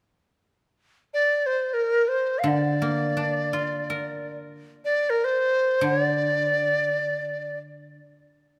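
Tender and wistful, this short passage of Chinese traditional chamber music unfolds in free time, with a large dizi carrying the melody in a bamboo, airy voice marked by a buzzing membrane, vibrato and a crisp attack. The dizi enters at 1.1 seconds, and the guzheng joins at 2.4 seconds with a bright, silvery, ringing accompaniment played with fingerpicks. Both instruments sit up front in a moderate concert hall reverb, cut from a longer piece.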